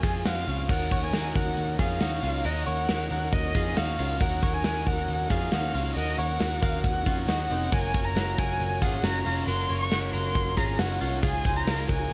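A dark, woody violin carries the melody across this bittersweet, wistful stretch of jangly indie pop, its single bowed line smooth on top and shaded with vibrato. Beneath it, a bright, clean twelve-string electric guitar picks compressed arpeggios bathed in spring reverb, while a compressed, overdriven electric guitar adds picked accompaniment in the background. A vintage muted bass, dark, amped and round, anchors the low end, and a big acoustic rock kit sits up front with a punchy kick, a medium-tuned snare, hi-hat and crash cymbal ringing in a big room. At 0.7 seconds a buzzy, overdriven combo organ with light vibrato joins quietly in the background. The harmony drifts from F minor through E-flat minor seventh and G-flat major seventh toward a D-flat add-nine, all heard in a small room and cut from a longer piece.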